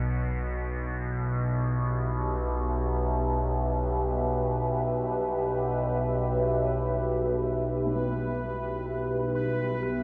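Dark ambient drone in free time, unsettling and cavernous, cut from a longer piece: an up-front, resonant drone with moving overtones holds from B1 to B2 from the start, a deep, mellow, detuned pad enters at 1.9 seconds with sustained chords from G4 to E5 over a G harmony, and a bubbling texture of random filter steps appears on B4 at 7.9 seconds, all three parts carrying chorus and built-in reverb within a dreamy mix soaked in a huge reverb lasting 8.1 seconds.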